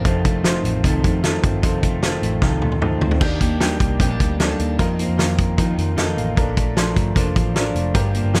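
Breezy and youthful, this short cut from a longer jangly indie pop piece moves at 152 BPM in a straight 4/4, sitting in Bb major. A loose indie drum kit sits up front with a fat snare, a punchy kick and a warm, rolled-off top, while a vintage muted picked electric bass adds a dark, foam-muted low end. Two electric guitars fill out the middle: one runs through a small old amp with a slightly broken-up, lo-fi, compressed tone and lush chorus, and a mellow, clean guitar plays arpeggios soaked in chorus and delay. A bright upright piano rounds out the texture with a woody, intimate sound, audible action noise and long sustain, and it steps forward with a short fill around 5.8 seconds. After a drum fill closes the opening passage, the harmony shifts at 3.2 seconds from F7 to Ebmaj7, then moves through F7sus4 to Bbmaj7, all under a light reverb.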